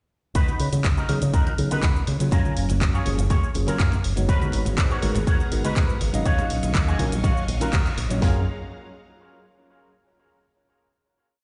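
A fingered electric bass run through an envelope filter anchors this short, sunny nu-disco piece, its warm, tube-saturated tone jumping octaves and pumping against the kick at 122 BPM in F# major. The house drum kit sets a punchy four-on-the-floor kick and a cracking snare up front, while a second layer of cabasa, handclaps and hi-hats adds a disco backbeat, with bright, hard-handed congas tucked in the background. A twangy, clean electric guitar with its own envelope filter picks a close-voiced funk chord riff through chorus and tape echo, and from 1.1 seconds a tine electric piano adds syncopated, rootless chord stabs, low-pass filtered and echoed. At 4.3 seconds a lush sawtooth string machine pad with a sub octave and slow attack swells in softly behind the band. The chords move from C#9sus4 through F#maj9, G#m9 and D#m9, with a band accent at 7.7 seconds before the groove resolves onto a final F#maj9 chord at 8.2 seconds. 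The mix sits in a stony, bare-room reverb with a dulled top end, as if heard over a big sound system.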